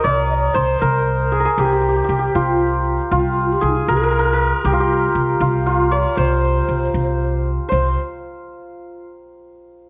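Persian modal ensemble music in 6/8, hypnotic and soulful, with a bright, shimmering hammered santur carrying the melody up front, a breathy, hollow low ney with vibrato sitting in the background as a second line, and a woody pizzicato upright bass anchoring a low C, the ney and bass both stopping at 7.9 seconds so the ringing santur plays alone in light reverb until it stops at 9.0 seconds.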